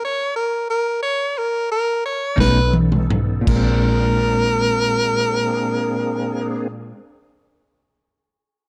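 The bright tenor saxophone leads this short slow blues cut from a longer piece, sitting up front with vibrato and scooped notes as it plays alone from 0.0 s over a stop, in a jazz style that gives the mood a rollicking, swaggering edge. At 2.4 s the band enters on a B9 chord, with a drum fill on the vintage kit, whose punchy kick, medium-tuned snare, toms, dark crash cymbal and pumping small-room sound carry a rolled-off top, while the tempo slows toward a Bb9 chord at 3.5 s. The clean electric guitar adds picked accompaniment with harmonic tremolo, and the reedy tonewheel organ holds sustained chords with key click, chorus vibrato and a slow rotary speaker. Underneath, the vintage muted fingered electric bass gives a round, foam-muted, amped low end. The groove sits in 12/8 at around 54-62 BPM in Bb mixolydian, framed by light reverb and studio ambience.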